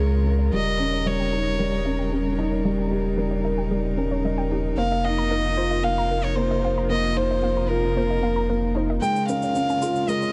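In a straight 4/4 pulse, this melancholic, cinematic piano-and-strings electronica opens with a rich, floating solo violin carrying the melody up front, backed by the sustained chords of a dark, close string quartet with vibrato and portamento, a soft felt-muted upright piano riff, and a warbling, lo-fi pluck playing arpeggios in the background as a filter sweep moves over it. A deep, round sub bass with tube saturation sits prominently beneath until 9.0 seconds, when it drops away and a faint, overdriven electronic shaker enters for a short build-up as the harmony settles on Bbm7. The production is dark and warm, with delay on the violin, piano and pluck, chorus on the pluck, and a small room reverb.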